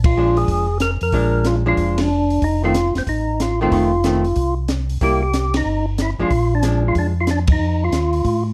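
A brisk swung 4/4 drives this bluesy, soulful soul jazz organ trio fragment, with a dry, punchy cocktail drum kit of dark cymbals and high-tuned snare under a round, mellow tonewheel organ bass lifted by chorus vibrato and slow rotary speaker, while a fat, lightly overdriven, percussive second organ carries the melody through its own slow rotary, a clean, hollow-bodied archtop guitar comps until 7.1 seconds, and full-band accents land at 0.0, 1.9, 5.5 and 7.4 seconds over a dark blues progression in a softly reverberant mix.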